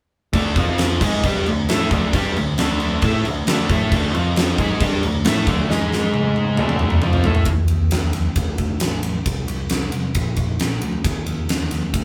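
A band playing live in one room with light reverb opens this driving, aggressive hard rock excerpt in D minor, cut from a longer piece and moving at 134 BPM in a straight 4/4. A bright, cranked stack guitar and a warmer overdriven electric guitar sitting in the background carry the riff from 0.3 to 7.5 seconds, running through chords such as D5, F5 and G#5 before landing on Dm. Underneath, a picked electric bass with a direct tone holds the low end, and a huge arena drum kit sits up front with a fat snare, punchy kick, crash, ride and toms in a big-room sound. A drum fill from 5.7 seconds leads into a sparser second section where the guitars stop at 7.5 seconds, leaving bass and drums to carry the figure through D5 and Bb with breaks in the harmony. The drums are the loudest element, giving the passage its heavy, physical push.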